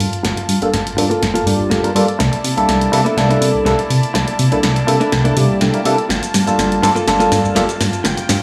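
A moderate plate reverb lends digital studio ambience to this sensual, groovy filtered disco house excerpt at 123 BPM in G dorian, where a punchy, tape-warm analog drum machine with hi-hat, shaker and snare runs a drum fill under a filter sweep and build-up, an earthy chamber string section holds Gm9 and C13 chords over a plucky, funky analog bass, both through a low-pass filter, a bright, scooped clean electric guitar riff adds a fill at 5.1 seconds, and a barky, lightly overdriven tine electric piano with phaser comps from 0.6 to 7.6 seconds.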